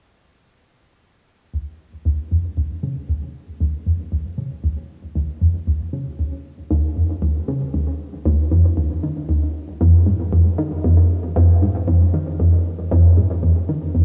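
A squelchy, detuned synth pluck with a resonant filter bite enters at 1.5 seconds and plays an up-front low riff through to 14.0 seconds, its chorus, cassette-tape grain and analog delay sitting in light reverb to give this short cut from a longer ambient piece a hypnotic, cosmic feel.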